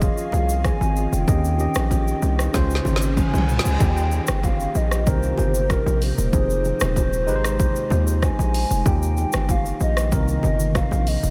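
A punchy, heavy 808-style bass sits up front in this joyful, sunny afrobeats excerpt at 95 BPM, driven by an electronic deep house kit with a punchy kick, woody snare and dark hats, with very quiet acoustic congas and bongos underneath. A hollow, warbling clarinet-like synth lead carries the melody through chorus and tape echo, over a worn, slightly out-of-tune tine electric piano and an ethereal, mellow pad in the background, all moving through chords such as Fm7, Dbmaj7, Ebadd9 and Cm7. A background riser and a drum fill from 2.5 to 3.8 seconds lead into the second section, and the whole dreamy mix is soaked in a moderate cathedral reverb.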